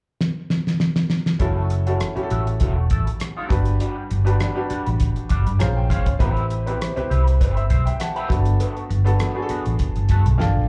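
Lush 1970s-style soul at 100 BPM with a gentle sixteenth-note swing, smooth and cinematic, opening on a damped drum kit fill with a fat snare and tight kick before foam-muted fingered bass, a clear baby grand piano with slapback echo and a dark, slightly broken-up wah guitar riff enter at 1.4 seconds over chords moving from F#m7 through Gmaj9 and Am9, with piano fills at 5.0 and 9.8 seconds, all heard through a club PA with moderate reverb in this excerpt from a longer piece.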